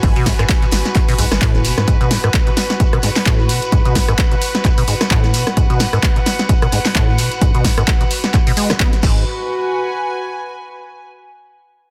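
Driving and raw, this acid house excerpt, cut from a longer piece, rides a swung sixteenth-note groove in four. A squelchy, resonant square-wave acid bass riff with tube saturation, subtle chorus, delay and sidechain pumping runs through the passage over a G#m7 harmony, while a round, deep analog bass sits beneath it in the opening moments and briefly returns near 9.0 s. Up front, a punchy, tape-warm electronic kick pairs with an analog drum machine's crash cymbal, handclaps, hi-hat, rim click and snare, and a grainy, distant shekere adds texture in the background. A very quiet acoustic rock kit's hi-hat and snare surface only at the start, ending at 1.8 s. A bowed string section with light vibrato and a reedy, gut-string tone pumps with the sidechain throughout and carries on alone until 11.1 s, all within light reverb and a dense, heavily limited master.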